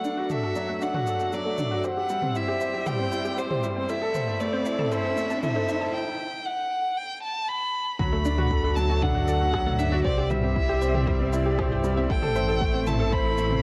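Intimate and moving, this piano and strings electronica piece sets a rich, smooth violin melody and a boxy, up-front grand piano riff over clear, sidechain-pumped chamber chords from a string quartet in the background, a very quiet, round analog pluck arpeggio with ring modulation, and a deep house drum kit of rim click, shaker and toms, while an electronic riser enters at 2.0 seconds ahead of a short break; then at 8.0 seconds a dark, rumbling detuned saw bass and a layered electronic kick drum arrive for the drop, captured on a home cassette recording with light reverb and digital ambience.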